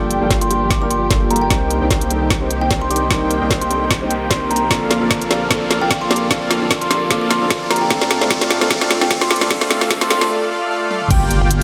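Lush and dreamy, this future bass build-up is cut from a longer piece and moves at 150 BPM in 4/4 with a swung, half-time feel in G minor, cycling through Gm7, Cm7, Bbmaj7 and Dm7. A fat, nasal, detuned sawtooth polysynth sits up front with a bold riff, thickened by chorus and ring modulation and pumped by sidechain. Beneath it, a saturated sine sub bass pumps too, a vintage grand piano murmurs smooth accompaniment in the background through dub echo, and a dark, bowed string section holds very quiet, expressive sustained chords. A woody, ringing kalimba carries the melody mid-forward in the mix with tape echo, while a trap kit with crisp hats, a woody snare, toms and crash cymbal drives fills alongside a knocking electronic kick. A faint electronic riser joins at 2.1 s as filter sweeps build through the section, a break arrives at 10.3 s, and at 11.1 s an impact lands with a punchy, detuned unison pluck arpeggio, all set in a lush digital hall.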